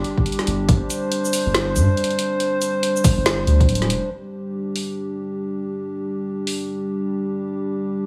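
Deep dubstep at 140 BPM in a brooding, heavy half-time feel with swung sixteenths, this excerpt opens on a drop where a round, soft sub bass holds until 4.0 seconds, a punchy electronic kick runs from 0.2 to 3.7 seconds, a deep house kit of woody snare, dark hats and shaker continues to 6.6 seconds, and a moody, nasal, detuned analog pad with chorus and vintage 12-bit sampler grit sits up front sustaining chords, opening on G5, across the full 8.1 seconds, all set in light studio reverb.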